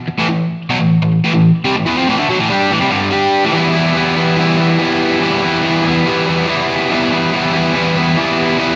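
A crunchy, bright, overdriven electric guitar plays alone from 0.1 seconds, picked, double-tracked and up front with slapback echo, ranging from G2 to G4 as it moves from an A5 chord to E minor at 3.5 seconds in this raw, gritty rock fragment in E minor at 142 BPM in a straight 4/4, tuned to A4 = 441 Hz, all set in a stone room's reverb until it breaks off at 8.8 seconds.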